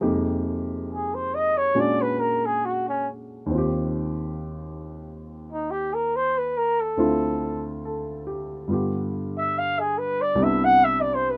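A gently swung 4/4 lilt carries this melancholic, smoky jazz ballad fragment, where a dark grand piano with short sustain lays down the accompaniment from the start and a breathy, whispered flugelhorn enters at 0.9 seconds to take the solo melody with a soft attack, light vibrato and an intimate, mellow tone in a light reverb.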